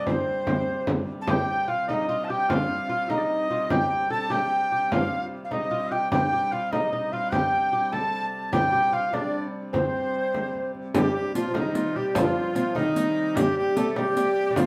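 In a straight 6/8 medieval dance with a mysterious, ancient mood, an airy, chiffy tenor recorder carries the melody up front over an edgy, scooped shawm line and a delicate fingerpicked lute with doubled strings, while a dark, woody, wheel-bowed hurdy-gurdy drones beneath, a small, bright, saturated frame drum drives the pulse, and a close, dry riq with dark jingles enters at 10.9 seconds, all in a live room bathed in lush studio reverb.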